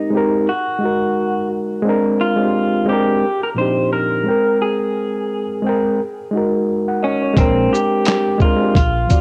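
Lo-fi hip hop at 87 BPM with a lightly swung 16th-note feel, dreamy and mellow, cut from a longer piece and heard through cassette tape with light reverb. Up front, a gritty, reedy overdriven electric piano plays lush chords such as Gb69, Bb9 and Ebmaj13, while a slightly broken-up electric guitar through a small old amp carries the melody with a low-pass filter and analog delay. At 7.4 seconds a muffled, pitched-down sampler-style kit with thumpy kick, snare, hi-hat, shaker and handclaps arrives alongside a woody pizzicato upright bass, which stops at 9.0 seconds.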